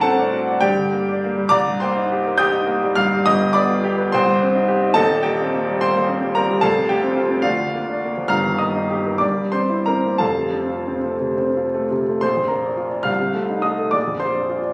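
Captured on a phone in a moderately reverberant recital hall, this fragment of a passionate, warm romantic character piece features a clear, intimate grand piano placed up front with audible action noise, playing solo in a rubato 6/8 at about 57-75 BPM in dotted quarters, tuned to A4 = 441 Hz and ranging from Eb1 to G6, as minor-leaning harmonies built on Gm, Cm7 and G7 settle into Bb major from 5.0 s before a new section begins at 12.2 s and closes on Bb.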